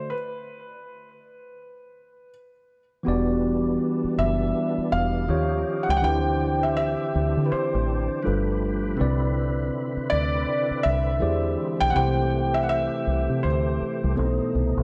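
Soaked in a long plate reverb, the mix sounds dreamy, a smooth, introspective slice of R&B at 81 BPM in E minor, swinging gently on the sixteenths. A soft, felt-muted upright piano sits up front with the melody, its thin, intimate tone trailed by tape echo, while a clean tine electric piano, heard through its built-in speakers, supplies accompaniment from the very start. The first 3.1 seconds are a stop, with the two pianos hovering over unharmonized space. At 3.1 seconds a full tonewheel organ enters with sustained chords, its slow rotary speaker, chorus vibrato and key click adding a gentle shimmer. A round, dark, foam-muted dub bass, fingered and direct, arrives at the same moment and sits up front beneath it all. The harmony moves through rich extended chords such as Em7, G9, Cmaj9 and E7alt before resting on B7b9 near the end.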